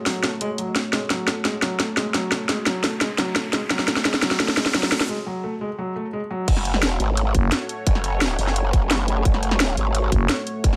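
At a straight 173 BPM in 4/4, this tense, futuristic dark technical drum and bass cut in F# minor builds on a layered, up-front kit with a cracking snare, hi-hat and crash, beneath an evolving, detuned sawtooth pad that sits in the background with chorus and sidechain pumping. A soft, felt-muted upright piano plays mellow arpeggios through a low-pass filter and tape echo, its action noise audible, while a very quiet electronic riser passes through. At the drop at 6.5 s a tight electronic kick and an aggressive, wobbling growl bass arrive, saturated, formant-filtered and pumping, joined for brief moments at 7.3 s and 10.1 s by a thick FM growl, all in light digital reverb.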